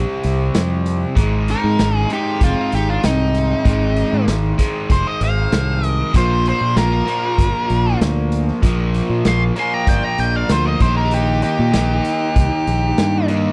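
A straight 4/4 groove at 96 BPM drives this smoky, gritty blues rock and southern rock power-trio excerpt, where a raw garage drum kit with a punchy kick and medium-tuned snare backs a growly fingered bass and a double-tracked, compressed overdriven electric guitar riff, both up front, joined at 1.5 seconds by a dark octave-fuzz lead guitar melody and a second line from a lead guitar through a small cranked amp tucked in the background, captured in a dry, close 1970s-style studio sound over chords moving from C5 through Ab and Bb to Eb/Bb.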